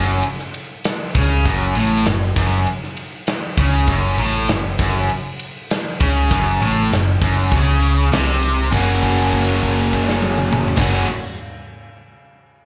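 This sounds like a live club gig heard through the venue's PA, with light studio-style reverb and a roomy club ambience around a confident, driving classic rock cut from a longer piece. At 99 BPM in a straight 4/4, tuned slightly sharp to A4 = 441 Hz, a bright, overdriven electric guitar sits up front with a double-tracked riff. It ranges from F#2 to F#4 and carries a slapback echo. Beneath it, a picked electric bass with an amped, warm tone holds down the low end between F#1 and C#2, while a big acoustic rock kit with a tight kick, medium-tuned snare, mid-forward body and rolled-off top drives the groove with crash, ride and toms. The opening passage rests on an F#5 power chord, then the music shifts to an F# chord at 8.7 seconds, where a held note rings out until 10.8 seconds.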